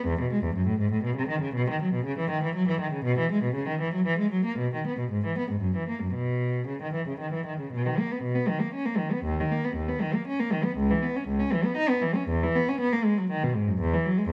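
A single bowed cello, up front and warm, carries this radiant, flowing baroque-style suite movement in B major, its soft attacks, singing vibrato and expressive portamento ranging from C#2 up to D#4. The playing moves in 3/4 around 119 BPM with a free, rubato feel, and a new section begins at 7.7 seconds in this 14.3-second cut from a longer piece. A moderate stone-room reverb and a dark production frame the solo line.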